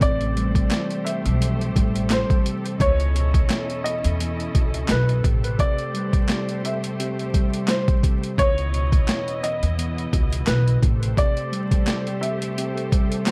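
Gritty and reflective, this boom-bap hip-hop excerpt swings lightly over chords moving between Am9, C#m9 and Am7, with vinyl crackle and small room ambience around it. Up front, an overdriven, sampler-style drum kit with a thumpy kick, medium-tuned snare, handclaps and hi-hat sits over a woody pizzicato upright bass that stops at 11.1 s. A dark, slightly detuned upright piano carries the delayed melody above a mellow tine electric piano with cassette tape colour and a lush, bowed string section holding smooth sustained chords.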